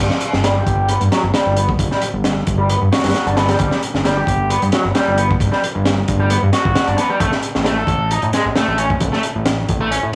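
A dry, gritty hardware recording with transformer saturation, vinyl crackle and small room ambience frames this energetic, playful breakbeat excerpt in G major at 133 BPM, cut from a longer piece. A crunchy acoustic drum kit with a high-tuned snare, tight kick and hi-hat sits up front with a dark, rolled-off top, alongside a fat, detuned sawtooth analog bass with a plucky filter and thick, evolving sustain. An overdriven, bright electric guitar picks a riff through low-pass filtering and analog delay, with a filter sweep running across the guitar from 0.0 to 10.2 seconds.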